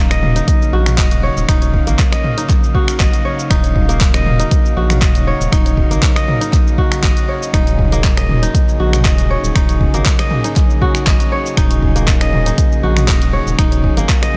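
A fingerpicked kora rings out crisp arpeggios through tape echo, pumping against a punchy, layered electronic kick that enters at 0.5 seconds in this hypnotic, driving afro house cut at 119 BPM in Eb minor, held on a single Ebm9 chord. Beneath it, a round, deep analog bass with a fast attack and a dark square-and-sine tone pulses with sidechain pumping. A produced deep house kit of cabasa, finger snaps, handclaps, hi-hat and toms fills in around them, while a warbling, detuned vintage pad with subtle chorus sustains soft-attack chords in the background, all set in light reverb and digital ambience.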